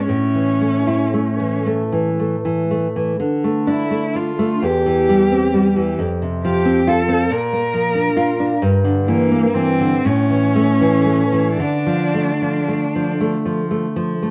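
A bowed cello carries the melody with vibrato and portamento, its expressive voice sounding somewhat distant even as it sits up front, before it falls silent at 13.2 seconds. Beneath it, a fingerpicked nylon-string classical guitar supplies an acoustic accompaniment that rings on alone until 14.3 seconds, moving through a D minor progression that settles from A back to Dm. This solemn, elegiac romantic duo drifts in a slow, rubato 6/8 at roughly 36-46 dotted-quarter beats per minute, with a moderate spring reverb and the warm grain of a cassette home recording on both instruments, in a brief passage cut from a longer piece.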